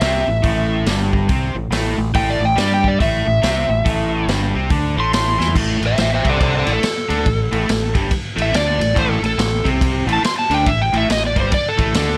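A dark, overdriven slide guitar with slapback echo leads this gritty, heavy blues rock and southern rock excerpt in A minor at 141 BPM with a swung feel, carried by a crunchy, double-tracked electric guitar riff, a growling fingered bass with overdrive, and an up-front vintage drum kit with dark cymbals and a punchy kick, all in light small-room reverb, while a drum fill at 5.3 seconds launches a slide guitar solo from 5.6 seconds onward.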